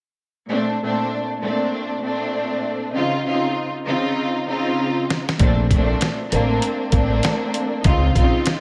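An intimate, bowed string section opens at 0.5 seconds, playing sul tasto with vibrato and a smooth, filtered top as it moves between Bbmaj9 and Dbmaj9 chords in Bb major. This sets a soulful, confident boom-bap hip-hop mood at 98 BPM with a swung 16th-note feel. A gritty, pitched-down sampler-style drum kit with a compressed, thumpy kick and a medium-tuned snare arrives up front at 5.1 seconds, and a woody pizzicato upright bass on gut strings joins at 5.4 seconds, all set in a light reverb.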